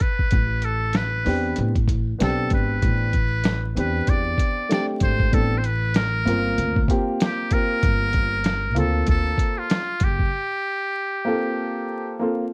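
Smoky and cool, this jazz-hop cut from a longer hip hop piece swings lazily in 4/4, with a buzzy, whispered metal-muted trumpet carrying the melody through plate reverb from the first moment. A muffled, compressed sampler-style drum kit with a thumpy kick and a growly pizzicato upright bass form the groove, while a dark, mellow upright piano enters at 1.2 seconds and moves from Am11 to Gm11. The drums and bass stop at 10.3 seconds, leaving trumpet and piano to drift through a brief break over vinyl crackle.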